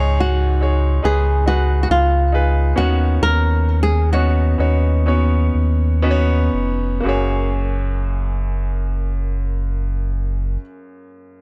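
Tender and emotional, this short pop ballad cut from a longer piece moves in 4/4 at 58-71 BPM in F# major, slowing over its first 7 seconds as a clear, polished baby grand piano carries the chords from C#sus2 through Badd9/D# to F#add9, a deep, full sub bass with octave sits up front beneath it, and a fingerpicked acoustic flamenco guitar sings the melody from 0.2 to 5.5 seconds inside a dark, dry production.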